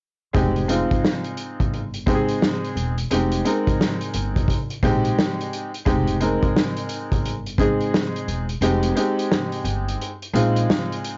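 A bright, worn upright piano sits up front, slightly detuned and colored by cassette tape, carrying the chords over a mellow, nocturnal jazz-hop groove with a swung feel. Plucked upright bass on gut strings adds a woody, thumpy low end until 10.6 seconds, while a vintage kit with a punchy kick, medium-tuned snare and hi-hat, its top rolled off in a small, pumping room, also takes on the cassette character. The kick drops out at 8.6 seconds, and the whole short clip carries light reverb and the muffled, lo-fi haze of a home cassette recording.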